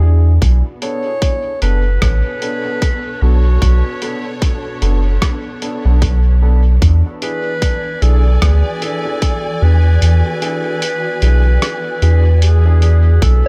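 A hazy, deep stretch of ambient dub cut from a longer piece opens on a dark, lush string section fading in with sustained bowed chords, alongside dark, woody piano stabs trailing dub echo and a round, soft sub bass sitting up front. At 0.4 seconds a tight, overdriven electronic kick enters with a pitched-down, compressed sampler-style kit of hi-hat and rim click, swung and echoing. Soon after, a mellow classical-style clarinet carries the melody through the digital ambience over a shift from Bm7 to E7, and the kick drops out at 10.0 seconds.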